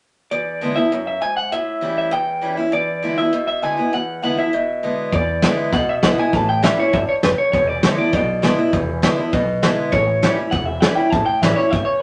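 Retro and rollicking, this short rockabilly cut moves at a brisk, straight four-beat pulse over a bluesy dominant-seventh vamp that shifts between E7 and A7. Up front, a twangy, slightly broken-up electric guitar through a small old amp carries the picked melody in a bright upper register, while a boxy, picked archtop acoustic guitar picks out the accompaniment beneath it from the opening moment. At 5.1 seconds the second section kicks in as a woody, thumpy upright bass on gut strings joins with plucked low notes, alongside a vintage brush kit with a punchy kick, a medium-tuned snare and hi-hat. The drums sit forward in a small, pumping room, and the whole take carries a moderate studio reverb with a rolled-off, vintage top end. It is a fragment lifted from a longer piece, ending around 12 seconds.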